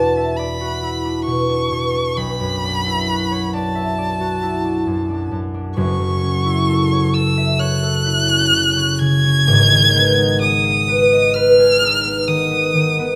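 Flowing in a rubato 4/4, this impressionist classical duo for violin and harp unfolds at an unhurried pace, with a luminous, pastoral mood. A single bowed violin carries the melody high in its register, between A5 and G#6, its tone rich and focused with a singing vibrato. Beneath it, the concert harp provides fingerpicked accompaniment spanning a broad range from a deep E1 up to E#5, its acoustic strings ringing out. Both players sit up front and sound together from start to finish, and the harmony drifts from E7sus2 through Bm11 and F#m7 before settling on G#m6 at 9.5 seconds. A moderate recital hall reverb adds an airy sense of space to this short passage, which is cut from a longer piece.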